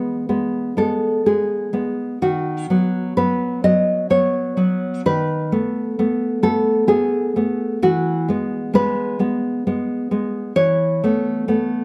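A fingerpicked nylon-string guitar plays alone and up front, a romantic classical piece in a three-beat metre with free rubato, its warm, nostalgic tone caught by close, detailed microphones that pick up finger squeaks within a moderate recital hall reverb, in a short passage cut from a longer work.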